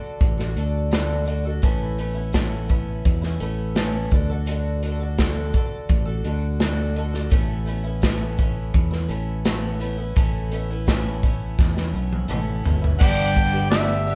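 A straight 4/4 groove at 84 BPM drives this open-road folk and heartland rock passage. A natural country drum kit, airy and up front with a punchy kick and medium-tuned snare, enters at 0.2 s with a round, fingered electric bass beneath a shimmering, octave-doubled twelve-string acoustic guitar moving between D and Aadd9. After a drum fill from 11.6 s, the harmony shifts to G at 13.0 s, where a gritty, overdriven harmonica takes the melody with light vibrato and tongue slaps, joined by a clean, twangy electric guitar riff with tremolo in the background and a very quiet, jingly tambourine, all heard as a jangly band playing live in one stone room with moderate reverb.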